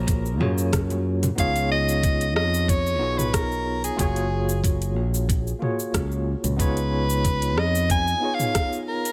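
A sunset chillout groove in a straight 4/4, relaxed and smooth, this short passage is cut from a longer piece. A clear soprano saxophone carries the melody up front, with light vibrato, scooped notes and a pop-style delivery trailed by digital delay. Beneath it, a worn tine electric piano accompanies through a combo amp, slightly out of tune, with medium tremolo, vintage 12-bit sampler grit and delay of its own. A bright, growly fingered electric bass sits direct and forward until 8.1 seconds, while a thumpy, compressed electronic kick and an overdriven deep house kit with metallic hats, cabasa, rim click and toms drive the beat in studio reverb. Bongos and congas add a band-limited, vintage colour in the background only until 1.4 seconds, as the harmony rocks between F#maj9 and C#9 inside a light, digital ambience.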